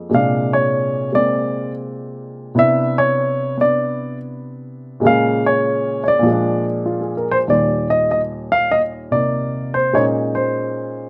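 A dark, mellow baby grand piano plays alone, up front and intimate with audible action noise and short sustain, in this playful, swinging jazz excerpt at 98 BPM in 4/4, moving through Bb9, Cmaj9, Bbm7 and Bb7 before settling into Eb major at 7.5 s on Ebmaj7 and Bbm11, captured dry in the open air.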